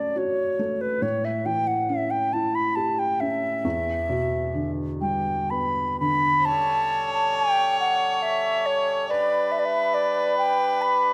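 Mournful and haunting, this Celtic slow air drifts in a rubato 3/4 at 69 BPM, cut from a longer piece, as an airy wooden baroque flute carries the melody over a soft, felt-muted upright piano with audible action noise until 6.5 seconds; a nasal, gut-toned fiddle adds a second line from 6.4 seconds, and a reedy accordion holds sustained chords from 6.5 seconds, all set in a moderate concert hall reverb.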